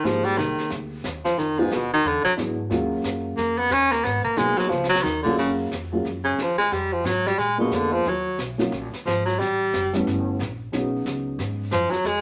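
Small-group swing and bop jazz at a brisk 180 BPM, smoky and swinging, cut from a longer piece, with a clear, up-front baritone saxophone soloing throughout, its vibrato, subtone, soft attack and scooped notes leading the way. A dark, mellow baby grand piano comps intimately with audible action noise, while a woody, growly upright bass plays pizzicato low beneath a vintage brush kit with dark cymbals, a high-tuned snare and a tight kick. A brief drum fill at 4.7 seconds sets up the move into F# major at 5.4 seconds, all within a wet club reverb.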